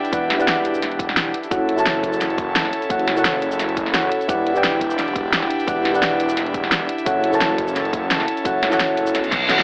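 A sub drop opens this rolling, melancholic liquid drum and bass excerpt at 173 BPM, where a round, chorused FM electric piano with dub echo and an airy, breathy pad move between Em9 and F#m7 over a pop drum kit of cabasa, hi-hat and fat snare, joined at 0.1 s by a punchy electronic kick and a menacing, saturated detuned saw bass, all set in a lush hall reverb with an AM radio sound before a reverse cymbal and drum fill close it at 9.3 s.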